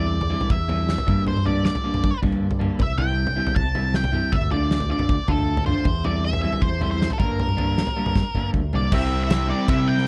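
Indie rock with a jangly, wistful mood, in which a dark octave-fuzz lead guitar carries the melody through tape echo over a slightly broken-up riff from an electric guitar through a small old amp, a growling overdriven fingered bass and a big rock drum kit with a punchy kick, fat snare and bright cymbals, whose fill at 8.2 seconds leads to a new section at 8.9 seconds where a distorted fuzz guitar riff with analog chorus joins, all captured in a dry, close 1970s-style studio sound.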